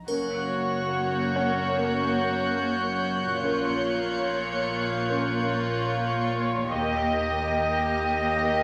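At a slow, straight 72 BPM in 4/4, this eerie, mysterious suspense cue from a cinematic score moves from Gb through Bb minor to Eb, with a pure, sul tasto violin melody up front over a close second violin line, woody vibrato violas and a close high violin texture that stops at 6.3 seconds. Mellow French horns hold sustained chords in the background, while a rich cello section, floating double basses and a deep, round sine sub bass anchor the low end. A very quiet, brilliant grand piano with audible action noise adds texture until 6.8 seconds, a small-room triangle sounds only in the opening 1.7 seconds, and a wet concert hall reverb surrounds the sound.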